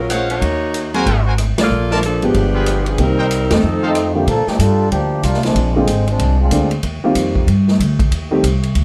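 Set in a lightly reverberant, roomy studio, this joyful big band swing cut in Bb major moves at 187 BPM, with a clear, close-miked saxophone section carrying the plate-reverbed melody over woody pizzicato upright bass, a distant swinging drum kit with boomy kick and ride, bright trumpet stabs, band accents at 1.5 and 3.5 seconds, and a slightly detuned upright piano comping short chords, before a mellow trombone section enters at 3.8 seconds and takes a solo from 4.3 seconds.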